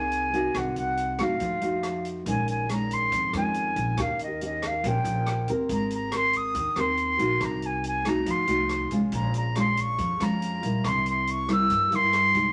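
A reedy, airy concert flute sings a melancholic, wistful melody up front in this straight-feel bossa nova excerpt, over thumb-plucked classical nylon-string guitar with fresh strings, woody pizzicato upright bass and an open jazz drum kit of hi-hat, rim click and boomy kick heard in a small room, inside moderate studio reverb as the chords move through Fm7, Bbm11 and Abmaj9 before reaching C7 at 10.8 seconds.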